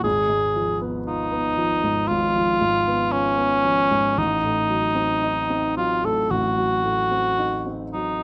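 A dark, smooth-topped cor anglais and an intimate concert grand piano begin together, opening this brief, yearning passage of romantic classical chamber music cut from a longer piece. The tempo sits slowly at 51-59 BPM in 4/4, with a rubato feel that lets the melancholic line breathe. The cor anglais carries the solo melody up front in a classical style, while the piano accompanies from deep in the bass, its notes ringing with long sustain and an audible, natural trace of action noise. The harmony rests on an F diminished chord over A-flat before shifting to an A diminished seventh at 4.2 seconds, deepening the sense of unresolved longing. Close, detailed microphones and very little reverb place both instruments near the listener until the passage ends at 8.2 seconds.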